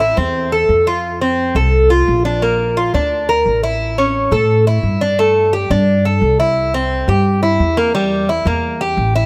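The Cuban tres sits up front, playing arpeggios from G3 to Bb4 with a metallic, picked sound from its double strings, some of them octave-doubled. This short clip of Cuban son and guajira moves at 174 BPM in a straight 4/4 and has a warm, danceable mood, with tuning set at A4 = 439 Hz. Beneath the tres, a pizzicato upright bass with steel strings supplies a woody, dark, thumpy bass line between A1 and A2, sitting lower in the mix. Both instruments play throughout, from 0.0 to 9.3 seconds, in a light reverb. The harmony moves through Am, F, Bb, A, Gsus2 and C before landing on Edim at 7.9 seconds, as the clip is cut from a longer piece.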